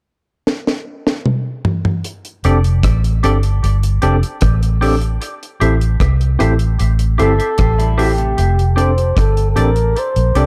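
A straight 4/4 pulse at 76 BPM carries this tender, smooth lovers rock reggae fragment in F major. It opens with a drum fill on a deep, dry kit whose high-tuned snare, tight kick, rim clicks, hi-hat and toms sit up front. At 2.4 seconds a round, punchy, foam-muted fingered bass arrives as the loudest part, joined by a gritty, overdriven tine electric piano with fast tremolo and by clean, compressed stabs from a semi-hollow guitar bathed in spring reverb and tape echo, as the harmony moves from F69 to Am7 and back. At 7.2 seconds a breathy, whispered flugelhorn takes the melody in an intimate jazz style, with vibrato, scooped notes, a soft attack and its own tape echo. Meanwhile a second hollow-body guitar adds shadowy arpeggios in the background until 8.6 seconds. A small room and a dark, warm production frame the whole, and the clip is cut from a longer piece.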